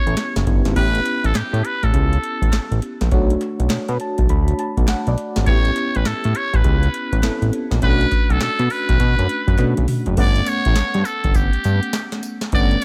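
Bouncy and upbeat, this new jack swing excerpt grooves at 102 BPM with a swung 16th feel. A raspy, buzzy trumpet with a metal mute carries the melody in jazz style, with vibrato, scooped notes and tape echo, over a tremolo-laden FM electric piano that plays a fill at 3.7 seconds, and a fat, detuned sawtooth bass with filter sweeps that sits up front. A booming analog drum machine with a deep kick, crisp snare, metallic hats, tambourine and toms drives the track alongside a very quiet human group handclap, and a drum fill at 9.6 seconds leads into a shift from A7 and Bm7 to Gmaj9#11 at 10.2 seconds, all within a digital ambience.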